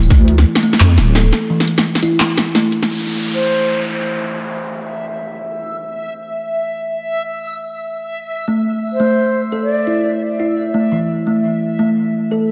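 A deep, detuned wobble bass with chorus opens this tense, cinematic half-time drum and bass passage at 172 BPM over an overdriven electronic kit of woody snare, bright hats, handclaps, tambourine and crash cymbal; the bass drops out at 1.3 s, and a downlifter enters at 2.9 s, while plucked kalimba arpeggios and a breathy silver concert flute drift through diffuse ambient delay above a reversed, granular swelling texture, in a dreamy mix soaked in plate reverb.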